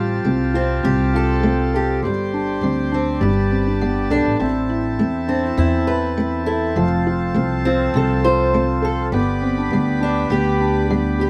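A dry, open-air recording of nostalgic, pastoral acoustic folk at 101 BPM, where a fingerpicked steel-string acoustic guitar carries the accompaniment, a reedy, breathing hand-pumped harmonium holds close-miked sustained chords, a felt-muted upright piano adds soft, mellow arpeggios with audible action noise and a slapback echo, and a woody, dark pizzicato upright bass sits up front under chords moving from Fadd9/A through Gsus4 and Am to F and G.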